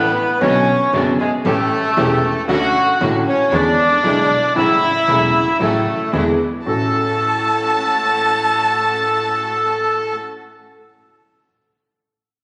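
Tango at 116 BPM in A major with a rubato feel, nostalgic and elegant, this fragment of a longer piece sets a reedy, vintage bandoneon up front on the melody while a bowed violin adds a smooth second line with vibrato and portamento, and a clear concert grand piano with deep bass and short sustain supplies the accompaniment. Behind them, a distant symphonic string section plays light-vibrato stabs, and a woody, growly pizzicato upright bass holds the low end until 6.9 seconds. Chords move through Bmadd9, A7, Dmaj7 and E7 before settling on A6, all heard in a wet concert hall reverb and captured on a phone in the room.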